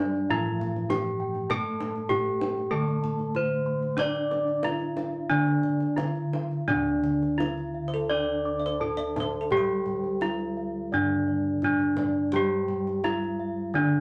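A moderate studio ambience and a soft top end frame this serene, shimmering excerpt of Javanese gamelan in D slendro at about 85-100 BPM in 4/4, where a bright, up-front bronze metallophone carries the ringing melody over a lower metallophone accompaniment and high metallophone arpeggios whose paired tuning adds beating shimmer, while mellow, round bossed gongs struck with padded beaters hold the bass, a deep kendang played with hard hands drives the percussion until 13.3 s, and a woody, thumbnail-plucked kalimba adds a second line from 7.9 to 10.9 s.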